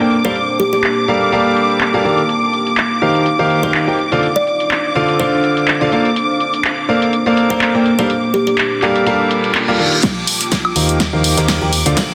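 A swung sixteenth-note groove from a punchy, tape-warm analog drum machine, with low-passed handclaps, hi-hat, snare and woodblock, drives this joyful, feel-good piano house excerpt. Above it sit a clear, up-front baby grand riff soaked in dub echo and sidechain pumping, veiled con sordino violins with vibrato, and a deep, detuned sawtooth pad with chorus. A hollow, woody kalimba melody plays in the background until 8.5 s and a reverse cymbal sounds at 9.3 s; at 10.0 s a build-up and drum fill arrive as a background electronic kick and a soft brush kit with ride cymbal and snare join, followed by a round, mellow FM bass, all within a lush hall reverb and a dense, heavily limited master.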